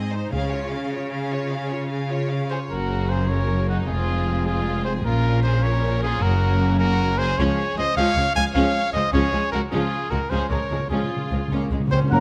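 A bright, up-front solo trumpet enters with stabs at 2.5 seconds over lush, vibrato-rich violin sections carrying the melody and a second line, while violas, intense cellos and a rich bowed double bass section fill out the harmony and bass in this adventurous, heroic cinematic cue in a straight 6/8. Hard-mallet timpani mark the opening build-up and return with a fill at 9.7 seconds. A French horn section slips in with sustained chords at 11.9 seconds, and just at the cut, at 12.1 seconds, the full orchestra arrives: trombones and an up-front dark tuba join an airy flute section, a clear oboe and a vintage-toned clarinet, all in light reverb.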